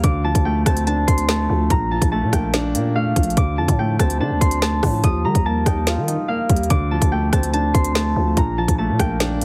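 From the first moment, a dark, ominous drill beat arrives all at once: a concert harp, a baby grand piano, a growling 808-style bass and an electronic drum kit all begin together and run through the full 9.4 seconds of this fragment cut from a longer track. The drums sit up front in a half-time feel, with a hard-clipped kick, a woody snare, crisp hi-hats and rim clicks. Beneath them, the buzzy, sine-based 808 strikes with a fast attack and then decays, while the piano's mellow low-register chords carry audible action noise and a short sustain, softened by a low-pass filter. High above, the fingerpicked harp carries the melody with a ringing acoustic tone, filtered and trailed by delay. The harmony circles through Dm7, Bbmaj7 and Ebadd9, and the whole mix has little reverb and a heavily compressed, radio-like sound.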